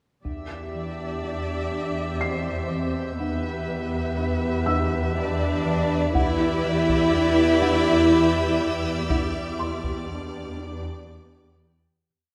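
Mysterious and ominous, this short, complete suspense film cue moves at a slow 61 BPM in 3/4, settled in E minor on a single Em7 harmony. Bowed strings carry most of it: a chamber violin section sings a focused, vibrato melody while a lush symphonic violin section doubles the tune at the octave in the background, and a second chamber violin group hangs high dissonant clusters above. A chamber viola section and a French horn section hold sustained chords, the horns' soft attack doubling the tune in unison from the background, while an intimate, close studio cello section traces the melody beneath and a studio double bass section holds a sustained low E. Heavy single strokes on solo taiko drums punctuate the texture, and a dry, woody folk marimba with medium mallets keeps a rustic, vintage pulsing ostinato in the low register. From 1.9 s a very quiet, swarming, detuned drone creeps in on a low E, and a felt-muted upright piano adds sparse, mellow single notes high above from 2.2 s. 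The whole cue sits in a wet scoring-stage reverb and fades out from 9.1 s to its close at 12.1 s.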